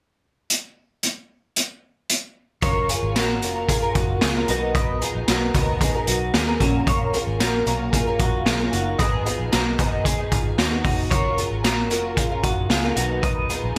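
Breezy and youthful, this excerpt of jangly indie pop at 113 BPM in F# major opens with a gritty, boomy garage drum kit alone, dressed in gated reverb, before a shimmering, woody twelve-string acoustic guitar, a slightly broken-up electric guitar playing arpeggios through analog chorus and delay, and a round, foam-muted bass all enter at 2.6 seconds over F#maj7, Bmaj7 and G#m7 chords, with bright 1980s-style digital production and a light small-room ambience.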